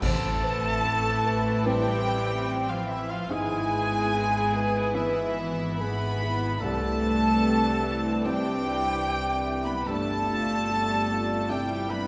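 A cinematic, emotional orchestral film score in A minor, moving and full of longing, flowing at a rubato 74 BPM as it moves from Amadd9 through E/G# and Cadd9 to Gsus4. Clash cymbals and concert bass drum with bright cymbals mark the opening accent and fall away by 1.6 s. Above a rich, floating cello section and a distant double bass section, a muted, intimate upright piano and a very quiet viola section accompany, while a soft-edged symphonic violin section, a mellow cor anglais and a silver, vibrato-laden flute carry second lines. A background studio violin section holds the sul tasto melody, and a punchy, roomy French horn section sustains chords, all washed in a wet concert hall reverb.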